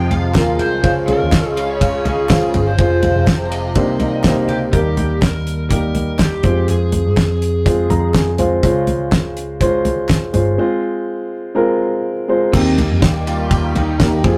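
Bittersweet and dramatic, this piano-driven pop excerpt moves at 123 BPM with a light sixteenth-note swing, built on a dark, mellow grand piano with short sustain that sits up front beside a dry 70s drum kit with a fat snare and a round, foam-muted picked electric bass. A lead guitar through a small cranked amp carries the overdriven melody, dropping out at 8.4 seconds and returning at 12.5 seconds, while a detuned, resonant sawtooth pad with chorus holds chords at the opening and close, and very quiet, crisp handclaps run until 10.2 seconds. The piano slips in a fill midway, and the rough rehearsal-room sound, with tube saturation and moderate ambience, lends the recording a gritty edge.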